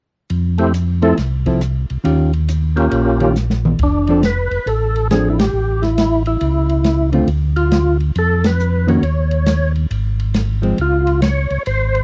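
A fat, percussive tonewheel organ carries the melody in this soulful, swinging soul jazz organ trio, its key click and second-harmonic percussion lightly overdriven through chorus vibrato and a slow rotary speaker. Beneath it, a mellow, round organ bass, also lightly driven and slowly rotating, sits up front beside an acoustic jazz kit with a boomy kick, a medium-tuned snare and a dark, smooth, rolled-off top, while a clean, fingered hollow-body electric guitar adds accompaniment. A drum fill at 3.4 seconds leads into the second section, where band accents land at 5.3 and 8.4 seconds in this dry, close, 1970s-style small-room excerpt.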